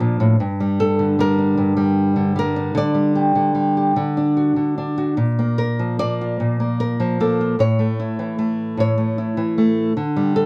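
Close, detailed and nearly dry, the recording puts a small, dark nylon-string guitar up front, fingerpicked alone from start to finish of this short cut from a longer folk piece. At a slow 50 beats per minute in a straight 6/8, the melancholic, wistful passage moves from G minor through Dsus4 and D to B-flat and then A. The guitar spans G2 to D5 and is tuned slightly sharp, to A4 = 445 Hz.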